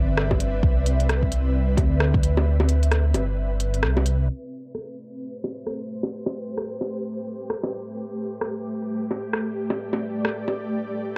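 A dark, rumbling detuned saw bass sits up front in this nocturnal, ghostly future garage excerpt, pumping with sidechain until it stops at 4.3 seconds as the harmony moves from Cmaj9 to Am9. An ethereal, airy pad with ensemble chorus, tremolo and built-in reverb holds sustained chords throughout, while a swung, tape-warm drum kit of crisp filtered hats, bongos and rim clicks is joined briefly by a deep, layered electronic kick that falls away after 2.2 seconds. From 4.3 seconds filter sweeps move over the pad and drums, and the mix carries a cassette-tape haze with light reverb.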